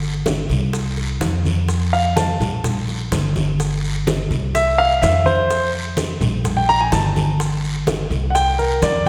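A wet, hall-like reverb gives this short excerpt of Cuban son and guajira a roomy, lingering glow around closely captured percussion. An acoustic upright bass, plucked on steel strings with a woody tone, sits up front from the opening. Beside it play ringing, low-tuned congas struck with hard hands and grainy, mellow maracas in the background. At 0.3 s, tight, high-tuned bongos and a raspy, dry guiro join the groove. The concert grand piano enters at 1.9 s with arpeggios that carry the solo, its warm, polished tone up front, and its long sustain, deep bass and audible action noise give it an intimate presence. The harmony moves through suspended and colored chords such as Gsus4, Cadd11 and C9sus4, keeping the straight 4/4 feel danceable and sunny.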